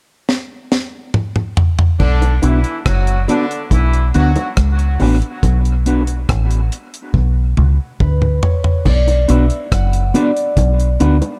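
Hypnotic and meditative, this dub reggae excerpt opens with a dry drum kit, its high-tuned snare and tight kick up front, playing a fill before a foam-muted, round fingered electric bass arrives at 2.0 seconds to anchor a B minor groove alongside low-tuned bongos set in the background. A dark, clean electric guitar adds fingered accompaniment steeped in spring reverb and dub echo, while a distant, roomy horn section with light vibrato plays a brief echoing second line until 4.5 seconds. A mellow, ringing concert harp takes the melody from 8.0 seconds, its fingerpicked notes trailing dub echo over a dark, warm production.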